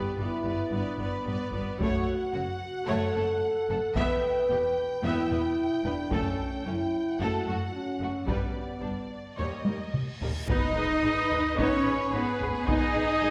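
Heard from further back in a wet scoring-stage reverb, this heroic, epic orchestral film-score excerpt at 111 BPM in F# phrygian sets an intense, vibrato-laden violin melody over a smooth second violin line, warm viola accompaniment, dark and distant French horn chords and a rich cello and double bass low end, while close, dry taiko drums struck with heavy sticks enter at 1.8 seconds, a huge reverse cymbal swells in the background from 9.9 seconds into an impact at 10.5 seconds, and a clear trumpet adds stabs from 10.5 seconds.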